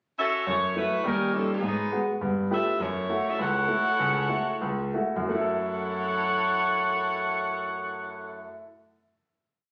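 A swung 4/4 pulse at 175-206 BPM drives this brief, sultry jazz piece in F# minor, which opens with a pickup bar in which a dark, vintage saxophone section begins a motif-based melody of song-like phrases in four-part block harmony, tinged with light vibrato and placed up front. A clear concert grand piano supplies stride accompaniment with deep bass and close voicings, moving through F#m7, D#7, G#m7 and G13 as the tempo slows from 2.8 s to 5.3 s, where the ensemble settles onto a final chord. The brassy sound sits in a large studio with moderate reverb, captured on a phone in the room with compression.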